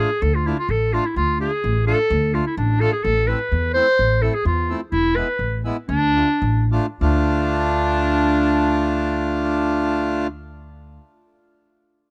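Heard in a dry, close studio sound with a 1970s character and little reverb, this excerpt from a longer klezmer piece moves in a straight 2/4 at 96-128 BPM, festive yet bittersweet, in D dorian sharp4. Up front, a bright, vintage-toned clarinet carries the melody in a classical solo style, ranging from D4 to C5. A reedy, hollow accordion with a mid-forward presence supplies the accompaniment, while a woody, growly upright bass with steel strings plays pizzicato beneath them, its dark acoustic tone anchoring the low end. The harmony passes from Dm to Am and then to E, and the tempo slows from 4.9 to 7.0 seconds as the music settles back on Dm at 5.9 seconds. Clarinet and accordion stop at 10.3 seconds, leaving the bass alone until 11.0 seconds.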